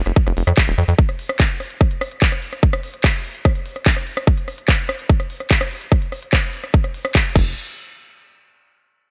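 A dry, close mix puts every part up front in this hypnotic psychedelic trance fragment at 146 BPM in straight 4/4. A punchy, overdriven electronic kick runs from 0.2 to 7.4 seconds beside a crisp, tape-tinged drum kit of hi-hat, handclaps, rim click and crash cymbal. A tight sawtooth-and-square sequencer bass with a fast-attack filter pluck and moving notch appears only briefly at the opening and again near 7.4 seconds.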